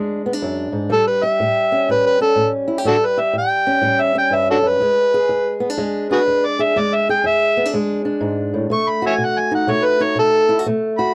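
A fingerpicked, ladder-braced acoustic guitar opens this short excerpt of acoustic country blues, its old strings giving a dark, woody, boxy tone as it sets down a swung accompaniment in 4/4. At 0.9 seconds an amplified, overdriven harmonica enters with the melody and carries a soulful, rollicking solo through to the end at 11.1 seconds. The harmonica is gritty and jazz-inflected, colored by light vibrato, tongue slaps and scooped notes, and it sits up front, a touch louder than the guitar. The guitar also sits up front, moving from E7 to A7, back to E7, then to B7. The sound is dry and close, in the manner of a 1970s studio recording, with little reverb.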